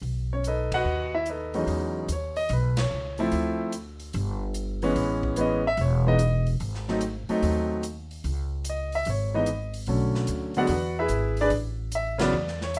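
A swung 4/4 groove at 146 BPM drives this relaxed jazz piano trio excerpt in E major, with an airy drum kit of ride cymbal, hi-hat, snare and punchy kick sitting back in the mix beneath a woody, growly pizzicato upright bass that stays up front from the start. The concert grand piano enters at 0.3 seconds and carries the melody with a deep, natural tone, moving through chords such as Emaj13, Amaj7, G#7b9 and E9 in light reverb. Band accents land at 0.6, 2.7 and 12.1 seconds, punctuating the warm, easygoing mood of this fragment of a longer piece.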